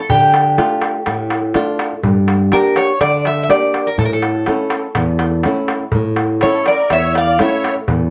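Tense and intense, this short cut from a longer Greek folk piece moves at 123 BPM in a straight 4/4, played by a bouzouki band. The bouzouki carries the melody up front from the very start, its picked double strings bright and metallic, with some courses doubled at the octave. Alongside it, a dark, fingerpicked flamenco guitar supplies the accompaniment, also up front, with audible finger squeak as it moves through D minor, G minor and A. A metal-shelled darbuka adds crisp, hard-handed percussion, its vintage, band-limited tone sitting further back. Near the close, at 6.4 seconds, a musette accordion slips in with a reedy, shimmering second line. The band sounds in a moderate studio reverb, and lossy compression artefacts colour the sound.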